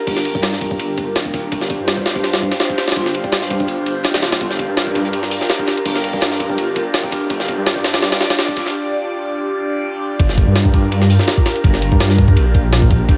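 Atmospheric yet frenetic, this drum and bass cut with a jungle edge moves at 166 BPM in G minor, swinging lightly on the sixteenths over a Gm7 harmony. An airy, breathy pad sits up front with sustained chords, its slow attack and long release treated with chorus and phaser. Beneath it, a thick, menacing detuned saw bass beats with a saturated, dark weight. The main drive comes from an up-front, sampler-style jungle kit, compressed and pitched up, with a thumpy kick, a high-tuned snare, hi-hat and ride cymbal carrying a gritty, tape-warm character. A very quiet second breakbeat kit adds hi-hat, shaker and snare with a smooth, rolled-off top until 8.7 seconds, giving way to a short break before the drop lands at 10.2 seconds. Light reverb, small room ambience and vinyl crackle frame this excerpt from a longer piece.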